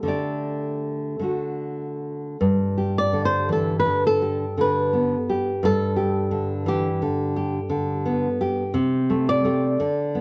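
A fingerpicked flamenco guitar carries a serene, romantic melody in its upper register, gently haloed by plate reverb, while a deep nylon-string guitar with fresh strings supplies fingerpicked accompaniment, its finger squeaks audible close up. The unhurried rubato in three moves from Dsus4 to D before the music settles onto G at 2.4 s and reaches Am7/C at 8.8 s. Both guitars sit up front in a dark, warm production with light room reverb, and the excerpt is cut from a longer piece.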